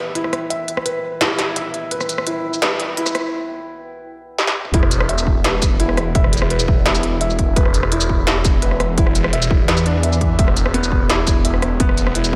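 A dreamy, reverb-soaked hall sound opens this tense, cinematic half-time drum and bass cut at 170 BPM in E minor, where a soft, felt-muted upright piano plays intimate arpeggios with audible action noise and analog delay over a deep, moody pad of sustained chords tucked in the background. An industrial drum kit with a clanging snare and crisp hats sits up front as a build-up with a filter sweep, a break and a brief drum fill leads to the drop at 4.7 s. There a thick, swirling detuned saw bass with phaser and saturation arrives alongside a heavy electronic kick, both carrying on until the fragment ends at 12.4 s.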